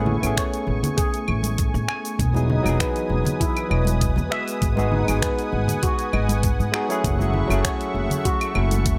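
Relaxed sunset chillout at 99 BPM, cut from a longer piece, where a barky tine electric piano with delay and a lush, detuned sawtooth pad with chorus carry Amaj7, Emaj7, G#m7 and F#m7 over a woody, up-front pizzicato upright bass with tube saturation, as a mellow, shimmering steel pan plays delayed arpeggios, ringing congas sit in the background, and a layered deep house kit of cabasa, claves, finger snaps and hi-hat enters at 0.2 seconds, joined by a gritty, tape-warm electronic kick from 0.4 seconds, all in light reverb.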